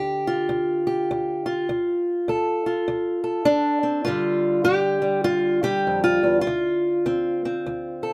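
A boxy, woody sound with light reverb opens this brief excerpt of acoustic country blues, cut from a longer piece, where a lone fingerpicked archtop guitar on old strings sits up front. In D minor at 101 BPM with a swung 4/4 feel, the mood is brooding and soulful, the guitar ranging from D2 to A4 as it moves from Dm to G5 at 4.1 seconds and settles on Dm7 at 6.4 seconds.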